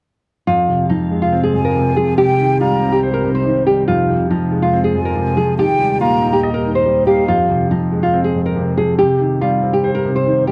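A fingerpicked classical nylon-string guitar carries the melody from 0.5 s, sitting up front beside a dark concert grand piano whose deep-bassed accompaniment shares its low-pass softening. This dark, eerie half-time hip hop piece is cut from a longer work. Soon a glassy, ethereal FM pad slides in underneath with slow-attack sustained chords, its vintage, mellow tone thickened by ensemble chorus and its own reverb, kept in the background. A breathy, hollow silver flute enters at 1.5 s with a close-miked second line, tongued and full of vibrato, its notes echoed by digital delay. Pad and flute both drop out at 7.3 s, leaving guitar and piano to carry the closing part alone. Light small-room reverb and a worn cassette tape quality with warbly pitch drift give the recording an aged, unsteady haze.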